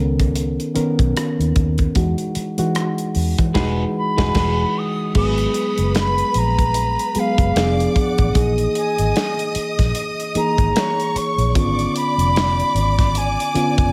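Warm and romantic, this lush 1970s-style soul fragment moves with a swung sixteenth-note feel in 4/4. A reedy, lightly overdriven electric piano sits up front with spring reverb, laying down rich major-ninth chords over a dark, foam-muted electric bass that is round and punchy. A modern acoustic kit with bright cymbals, a tight kick, rim clicks and a medium-tuned snare drives the groove, and a brief, twangy picked guitar riff at the edge of break-up drifts in the background at 3.5 s. A pure silver concert flute enters at 4.0 s with a tongued, vibrato-rich melody that sounds distant, arriving in the middle of a shared band accent. At 5.2 s a clear, focused bowed string section adds a second line as the harmony turns darker through minor-ninth, diminished and altered dominant chords, all wrapped in a small room reverb.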